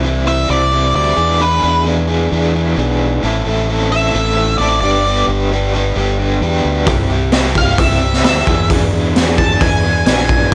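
A bright, overdriven electric guitar riff with tremolo and a growling, overdriven fingered bass open this moody, restless indie rock excerpt at 132 BPM, moving through Cadd9, E7, Am and G, with a dark octave-fuzz lead guitar carrying the melody from 0.3 seconds through distortion and slapback echo. At 6.9 seconds a raw garage drum kit comes in up front, its boomy kick, high-tuned snare and hi-hat sounding gritty and saturated in a small room. The production is dark with light reverb.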